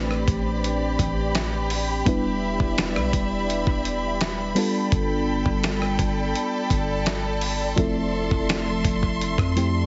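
Sensual and moody, this contemporary R&B fragment sets a mellow FM electric piano with a chorus effect against a lush, woody studio string section with vibrato, over a deep, round 808-style bass and a gritty, sampler-style soul drum kit with a thumpy kick, rim clicks and hi-hat. The harmony drifts from Am11 through Em7 and G9 to Fmaj7. The whole mix carries a heavily compressed, radio-like character, dark and dusty with its top end rolled away.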